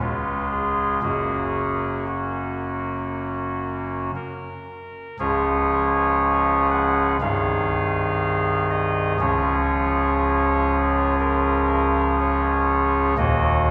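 A soft reed chamber organ, voiced with an oboe stop and a gentle chiff, carries this short classical chorale-style passage on its own from 0.0 to 13.7 seconds, sitting up front and spanning from C1 to Gb5. The mood is reverent and serene, moving at a slow 59 BPM in 4/4 with beats that sway unevenly rather than marching strictly, and the tuning rests slightly below standard pitch at A4 = 436 Hz. The opening settles from a C#7 onto F# major before the harmony shifts to Db major at 5.2 seconds, where a second section begins and moves through Ab/C and back to Db before touching Ebm near the close. A lush church reverb with a 2.5-second decay surrounds the organ, blended with the intimate ambience of a small room. Cut from a longer piece, the passage feels like a quiet devotional moment suspended mid-thought.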